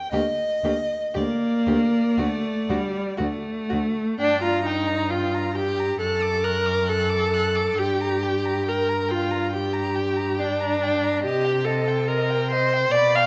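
The viola sits up front in this slow, romantic string quartet movement in G minor, its rich, even bowed line carrying the accompaniment with vibrato. Beneath it a distant cello holds the bass with a smooth tone, while two dark violins share the upper register. One plays the melody in a very quiet, woody voice, and the other traces an expressive second line with a soft attack, portamento and a smooth top. Set in 4/4 at a rubato 57-72 BPM, the mood is yearning and solemn, and the harmony settles onto G minor as a new section begins at 4.2 seconds before turning toward C minor at 11.2 seconds. A recital hall's reverb gives the quartet a spacious, resonant setting, and the passage is cut from a longer piece.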